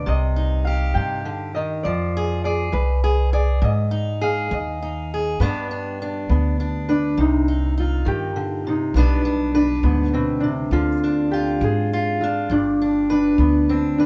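A moderate studio reverb gives this live-in-one-room folk excerpt an intimate, haunting air, set in C harmonic minor at 68 BPM in a straight 6/8. A ringing, thumb-plucked concert harp carries the melody up front, while a fingerpicked steel-string acoustic guitar supplies the accompaniment and a woody, growly pizzicato upright bass sits close and thumpy underneath. The same phrase is heard twice, the second time from 7.2 seconds, with the harmony turning through Cm, Fm and Ab5 toward G, then through G/B and Ddim back to G.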